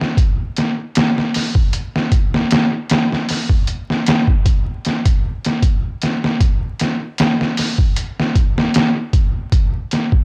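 A sampler-style trip hop drum kit of thumpy kick, medium-tuned snare and hi-hat opens this dark, melancholic excerpt alone in 4/4 with a slight sixteenth-note swing, its pitched-down, muffled, compressed hits made gritty by overdrive and vintage 12-bit crunch, touched with studio reverb and set up front in a dry hardware recording dusted with vinyl crackle.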